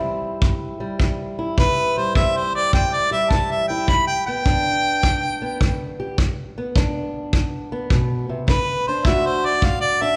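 A mellow harmonica leads this gritty, soulful acoustic country blues excerpt, entering at 1.6 seconds with light vibrato, scooped notes and a smooth top in a jazz-style solo placed up front. Beneath it, a dark, boxy fingerpicked ladder-braced acoustic guitar carries the accompaniment in G major, moving from C to G to D, while a tight, mid-forward kick drum played with brushes sits close with a rolled-off top. The 104 BPM swung groove unfolds in a recital hall's moderate reverb, giving the small group a churchlike sense of space.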